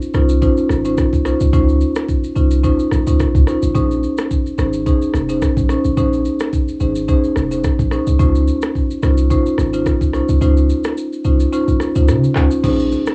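Cut from a longer piece, this smooth, hypnotic afrobeats passage has the colour of a home cassette recording in a small room. Up front, a close-miked, dry marimba moves between Dbmaj9 and Bbm11 over a punchy, heavy 808-style bass, while an electronic afro-pop kit of knocking kick, handclaps, rim click, shaker and crash carries a 12-bit sampler grit. The kick drops out at 10.4 seconds, and distant, ringing congas and bongos surface faintly in the background at 12.7 seconds.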